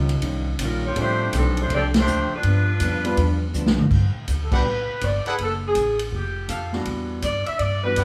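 A mellow saxophone section carries the melody with soft-attack vibrato, sitting up front yet roomy, over a woody, thumpy pizzicato upright bass and a swinging big-band drum kit with a punchy kick, in an energetic, joyful big band swing excerpt at 163 BPM. A warm concert grand piano and a dark, clean hollow-body jazz guitar in the background comp through the opening, the guitar dropping out at 3.8 s just as a drum fill leads into G major. From 4.5 s, on a band accent, a clear trumpet section adds stabs, all of it set in a moderate large-studio reverb.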